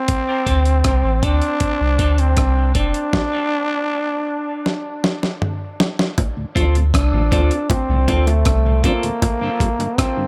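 An echo-heavy mix with light reverb carries this spacious, heavy dub reggae excerpt in D minor at 79 BPM. Up front, a raspy, growling trombone soaked in dub echo leads over a gritty, overdriven sampler-style drum kit with a thumpy kick and fat snare, plus a deep, round sub bass, while a clean, picked electric guitar with a high-pass filter and dub echo sits lower in the mix. The Dm7 groove halts for a stop at 3.1 s with a drum fill before returning at 6.2 s, where very quiet, low-tuned bongos join, followed shortly by a dark tonewheel organ with key click, chorus vibrato and slow rotary speaker in the background, ahead of a break on Gm7 at 9.2 s.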